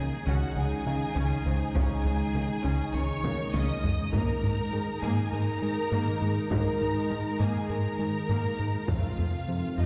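Brooding and futuristic, this cinematic hybrid orchestral and electronic film-score excerpt sets a dark, distant violin melody over a second violin line, lush viola and background cello sections, mellow French horns and a glassy, warbling FM pad, while a rubbery square bass riff, tine-like synth pluck arpeggios and a very quiet felt-muted upright piano add texture, and a band-limited taiko ensemble enters at 1.8 seconds with a fill at 3.2 seconds, all set back in a reverberant scoring stage as the chords move from Dbsus2 to Absus2 to F.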